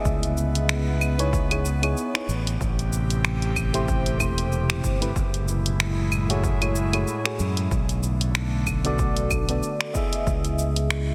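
A swung sixteenth-note groove from a deep house kit of claves, finger snaps, hi-hat and shaker, with soft clipping on the snare, rides over a punchy electronic kick in this wistful sunset chillout excerpt, where an up-front, punchy fingered electric bass sits beneath a round, dark FM electric piano carrying chorus and tape echo and an airy, breathy pad holding slow-blooming chords through C#m9, Am7, F#m9 and Bm7 in a dense, heavily limited mix with light digital ambience.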